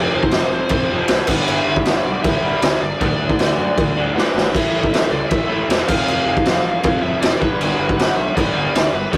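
Rebellious and upbeat, this fragment of straight-ahead punk rock charges along at 156 BPM, with a double-tracked, lo-fi garage guitar riff over power chords moving from F5 to G5, D5 and A5, while a smooth overdriven lead guitar carries the melody. A bright, growly fuzz bass digs in underneath, and the gritty, boomy drum kit enters at 0.2 seconds, sitting up front with a medium-tuned snare and rolled-off top and punching through a fill at 4.2 seconds. Light reverb and warm saturation give it the rough feel of a rehearsal-room take.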